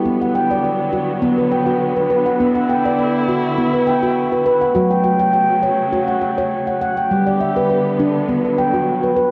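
A straight, even 4/4 pulse carries this short, meditative world piece, cut from a longer work and gentle in mood from start to finish. A stainless-steel handpan sits up front, playing ringing arpeggios with sharp finger strokes that sound bright yet warm, and a tape echo trails each note. Beneath it, a dark chamber string section holds sustained bowed chords, its ensemble tone soft in attack with expressive vibrato and a smooth top. Both parts play together for the full 9.3 seconds, moving from Bm through F#m and G before returning to Bm at 8.3 seconds. A wet echo-chamber reverb with a 2.1-second decay surrounds the pair, giving the meditative tuned percussion and strings a spacious, lingering air.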